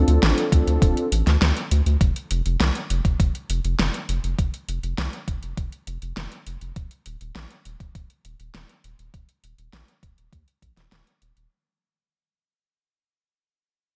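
Lightly reverberant and fading out across its whole 11.5 seconds, this driving, cinematic synthwave fragment moves at 101 BPM in a straight 4/4 over Dm7, F5 and Eb5 chords. Detuned, brassy sawtooth synth stabs with chorus, vibrato and digital delay sound only in the first 1.1 seconds, while a round, deep analog bass with sidechain pumping carries a filter sweep throughout. An overdriven, thumpy electronic kick enters at 0.5 seconds beside a layered pop kit of fat snare and metallic, tape-tinged hi-hats under gated reverb, both up front in small-room ambience.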